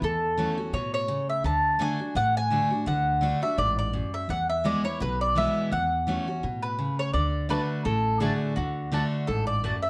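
Virtuosic and driving, this bluegrass excerpt in D lydian runs at 168 BPM with a swung 4/4 feel, as an up-front, mellow picked mandolin carries the melody over a full-bodied, fresh-stringed jumbo acoustic guitar and a thumpy pizzicato upright bass, while a second, woody mandolin adds stabs from 7.5 seconds, all set in a moderate studio reverb.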